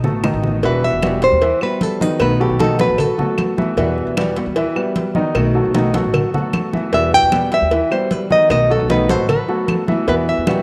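An up-front, full-bodied fingerpicked nylon-string guitar carries the melody from 0.0 to 3.6 seconds and again from 6.9 seconds in this nostalgic Cuban son and guajira excerpt, over a small, dark second nylon-string guitar, intimate grand piano arpeggios with audible action noise, a thumpy gut-string upright bass, damped thick-skinned congas, tight high-tuned bongos and cowbell, and band-limited woody claves in the background, within a moderate echo-chamber reverb.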